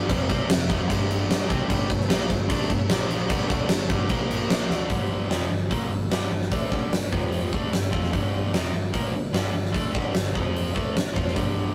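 The huge arena drum kit sits up front in this hard rock excerpt, with a hall sound, bright cymbals, a fat snare and a punchy kick driving a straight 4/4 at 149 BPM. An overdriven, double-tracked electric guitar plays the picked riff from start to finish, bright and gritty across a range from F2 to F4, built on power chords moving among F5, G5, C5, Bb5 and D5. Beneath it, a hollow-body short-scale electric bass sits in the background with a dark, round, amped tone. The mood is energetic and swaggering, and a drum fill at 4.7 seconds pushes the music into a new section at 4.9 seconds that keeps circling between G5 and F5. Light reverb and tube saturation give the whole piece the rough feel of a rehearsal-room recording, and it is cut from a longer piece.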